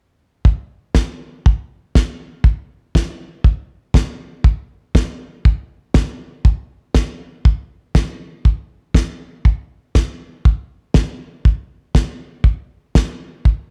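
Italo disco in a steady 4/4 with a straight feel, this short drum passage carries a nostalgic, bittersweet mood. The acoustic kick drum enters at 0.5 seconds and sits up front, sounding tight, dark and smooth with a rolled-off top. The acoustic snare joins at 0.9 seconds, fat and dry, its muted upper end matching the kick's mellow character. Both drums carry a hint of small room ambience, while the overall mix stays close and nearly free of reverb. Cut from a longer piece, the pair holds a single section until the snare stops at 13.1 seconds, with the kick continuing until 13.6 seconds.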